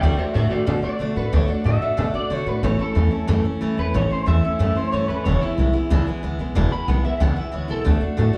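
From the first second, a twangy, slightly broken-up electric guitar solo in A major rides over a full-bodied, up-front picked dreadnought acoustic and a thumpy, woody upright bass in this rowdy, retro rockabilly clip at 184 BPM, moving through D, A and E chords, with the lead's ensemble chorus, slapback echo and analog delay, the acoustic's own slapback, and the small-room club ambience of a live gig heard through the venue's PA, until the electric drops out at 7.9 seconds.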